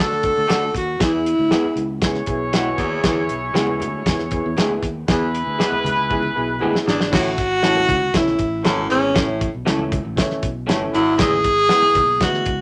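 Joyful and danceable, this excerpt of uptempo 1960s-style soul moves at 118 BPM in a straight 4/4 in A major, tuned slightly flat of standard pitch. A close-miked tenor saxophone with a soft attack and light vibrato carries the melody up front, sounding briefly at the start and returning from 6.9 seconds, while a clear, tight horn section plays a second line until 6.8 seconds. Beneath them, a woody upright piano accompanies, a bright, punchy fingered electric bass holds the low end, and a gritty, growling baritone saxophone repeats a raspy riff from 1.0 seconds. A cloth-damped drum kit sits up front with a fat snare, tight kick and dark cymbals, and a drum fill leads into the second section at 7.1 seconds. Further back, a slightly broken-up, lo-fi electric guitar through a small old amp adds stabs bathed in spring reverb, and very quiet, ringing congas played with hard hands join from 3.0 seconds. 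The harmony moves from D to E before settling on A and turning back to E, all within a moderate studio ambience.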